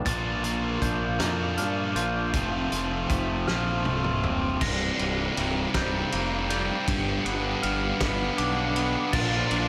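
A bright, scooped distorted electric guitar riff drives this melancholic, cathartic post-rock excerpt in a slow 6/8. At 4.6 seconds it gives way to a second overdriven guitar riff as a build-up begins, and it returns at 9.1 seconds. Underneath, a round, fuzz-drenched fingered bass and a loose indie drum kit with a fat snare, punchy kick and gritty, dark cymbals push forward, with a drum fill starting at 3.5 seconds. Behind them sit clean, twangy guitar arpeggios, soft bell-like glockenspiel arpeggios played with rubber mallets, and a detuned analog pad with chorus, all in a big arena-sized concert hall space, with slapback echo on the twangy guitar, the first distorted riff and the glockenspiel.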